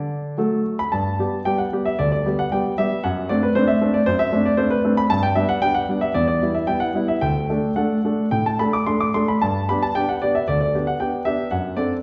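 Playful and graceful, this classical-period piano sonatina cut from a longer piece moves in 4/4 at 106-117 BPM with a rubato feel in G major, tuned slightly below standard pitch. A solo grand piano plays throughout, clear and intimate with audible action noise, spanning D2 to D6 over a progression that settles from D onto G at 0.9 seconds and passes through D7/F#, Em and D before returning to G and D7/F#. The natural piano tone sits up front yet is heard from further back in a recital hall, whose wet reverb with a 1.4-second decay surrounds the playing.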